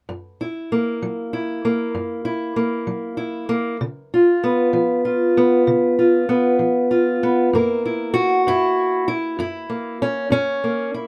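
A lone fingerpicked steel-string acoustic guitar opens the excerpt at 0.1 seconds, setting a laid-back, swaggering acoustic country blues in 12/8 at 64 beats per minute, counted in dotted quarters with a straight feel. The parlour guitar has a dark, boxy tone and sits up front, ranging from F#2 to A#4 in F# mixolydian. Its harmony rests on F#7, moves to C#7 at 3.8 seconds, and returns to F#7 as a new section begins at 7.5 seconds. Close, detailed microphones catch the instrument in a booth with a moderate, short ambience. The fragment is cut from a longer piece and stops at 11.1 seconds.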